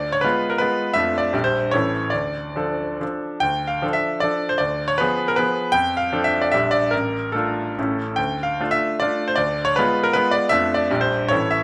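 Dotted rhythms drive this wistful, capricious romantic dance in 3/4 and D minor, a short cut from a longer classical piece where a solo grand piano, brilliant and intimate with audible action noise and long sustain, pushes and pulls between 129 and 176 BPM in free rubato, ranging from A1 to G5 and circling back through a diminished chord into D minor in a moderate recital-hall reverb captured by close, detailed microphones.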